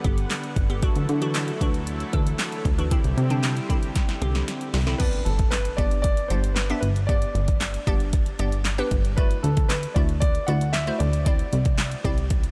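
Upbeat and euphoric, this dance-pop excerpt at 115 BPM in G major pairs a deep house drum kit with a deep kick, handclaps and a drum fill at 4.0 seconds, a funky plucky analog bass and a crystalline wavetable pluck both pumping with sidechain, and a smooth detuned supersaw pad that gives way at 5.0 seconds to a dark, mellow grand piano melody trailed by diffuse ambient delay and a very quiet electronic impact, all set in a light digital ambience.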